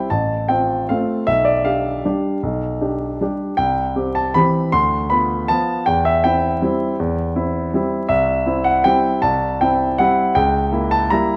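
Elegant and graceful, this brief classical waltz in C major moves at 158 BPM in 3/4 with an uneven, rubato lilt, as a solo grand piano, present and polished with short sustain, sits up front across a range from A1 to C6, captured by close, detailed microphones in a recital hall with moderate reverb and a vinyl crackle, its harmony passing through F/A, G7/B and Am7/C before arriving on a C#dim7 at 10.4 seconds as the cut from a longer piece ends.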